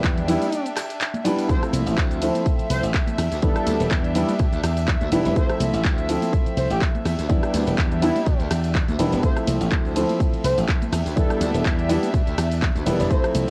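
A fat, nasal analog synth brass melody with chorus and filter sweep rides this sensual, groovy filtered disco house cut at 124 BPM with swung 16ths, over a bright, punchy slap bass with tube saturation, a dark, mellow grand piano with phaser, distant reedy violin chords, an up-front tape-warm electronic kick, a house kit of handclaps, hi-hat, ride, rim click and shaker, and very quiet tambourine and congas, all cycling between Em7 and Dm9 with a brief break from 0.5 to 1.5 seconds and a pumping, cassette-hazed home-recorded sound.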